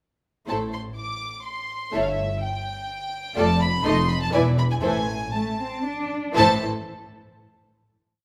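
In a straight, quick 3/4 at 117-127 BPM, this short, stormy classical-period movement for string orchestra in A minor opens with a floating, sul tasto violin melody up front, while a second violin line and lush, dark violas play short accented chords and sustained chords. Woody cellos mark the bass on the beats, answer at phrase ends and hold sustained notes, and a distant double bass section doubles the bass line. The dramatic phrase passes through A minor, D minor and an F seventh before settling on a bare A chord at 6.4 seconds, all set in a moderate recital-hall reverb.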